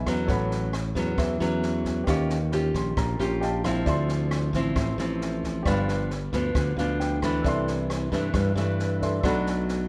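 Light reverb washes over this short bossa nova cut. It is a romantic, breezy groove at 134 BPM in a straight 4/4. Up front, a dark, fingerpicked nylon-string guitar with fresh strings carries the classical-toned accompaniment. A warm baby grand piano with short sustain sits higher and softer, adding fills around 2.5 and 6.6 seconds. A bright, growly fingered electric bass holds the low end with a punchy, direct tone. An acoustic jazz kit with a natural studio-room sound adds boomy kick, rim clicks and a high-tuned snare under a harmony that moves through A69, D#9, Dm9, G7, C69 and Bm7.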